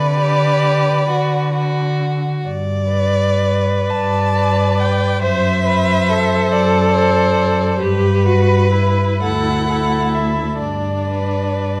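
Lyrical and tender, this slow romantic movement for string quartet unfolds in 6/8 with a supple rubato, cut from a longer piece. A rich, vibrato-laden violin carries the melody while a warm, smooth-topped second violin joins at 0.2 s with a second line, the viola offers clear, somewhat distant bowed accompaniment, and the cello sits close and up front on the bass. A moderate recital-hall reverb gives the focused bowed strings a natural sense of space.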